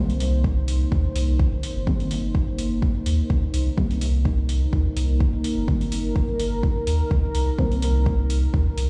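Dub techno at 126 BPM in C minor, this cavernous, meditative excerpt rests on a single Cm7 chord with a lightly swung sixteenth-note feel. A dark, detuned sawtooth pad with slow attack and long release sustains chords through chorus and its own reverb. Soft, full-bodied chord stabs sit in the background with a filter sweep, phaser, chorus and dub echo until 7.9 s, and both they and the pad pump along with an up-front, smooth sine sub bass. Metallic, tape-warm analog hi-hats start at 0.1 s, a layered, deep electronic kick joins them at 0.4 s, and the recording sounds as if played on a big sound system in a bare room with large studio reverb.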